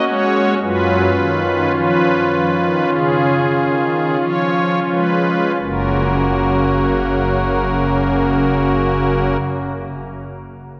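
Drenched in a cathedral's long, five-second reverb, this serene, reverent excerpt of a classical chorale has the hushed spaciousness of a church or concert hall. A solo pipe organ on soft, shimmering string celeste stops sits up front, its romantic voicing reaching from deep bass tones to the middle treble under a free, rubato pulse that slows through the opening 5.6 seconds. The organ falls silent at 9.4 seconds, and the room carries its sound onward.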